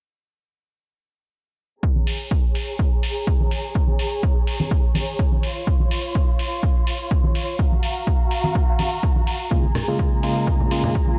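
Sensual and funky, this filtered disco house excerpt in Bb minor moves at 125 BPM with a light 16th-note swing, as an up-front analog kick and bright, soft-handed shaker and congas drive it from 1.8 seconds, joined at 2.1 seconds by hi-hat and rim click from a punchy drum machine. A lush, bowed violin section with rich vibrato sustains chords through Bbm7, Dbmaj7 and Gbmaj7, pumping under the sidechain and low-pass filtering while a filter sweep runs through the whole passage. At 9.5 seconds a clean tine electric piano joins up front with phaser and its own pumping filter, all set in a light small-room reverb.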